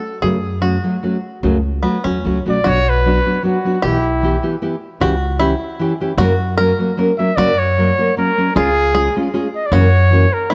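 In a straight 3/4 at 152 BPM, this passionate, dramatic mariachi excerpt in B harmonic minor rests on a woody pizzicato upright bass and a fingerpicked nylon-string guitar whose full-bodied, deep classical accompaniment sits up front. A twangy, percussive banjo played with fingerpicks carries a second line throughout, while the mellow solo trumpet, punchy with a smooth top and light vibrato, sings the classical-style melody in phrases from 2.5 and 7.2 seconds. Light reverb and a worn, warbling old-cassette pitch drift color the recording as the harmony moves from F#m through Bm and C#dim to a closing F#7.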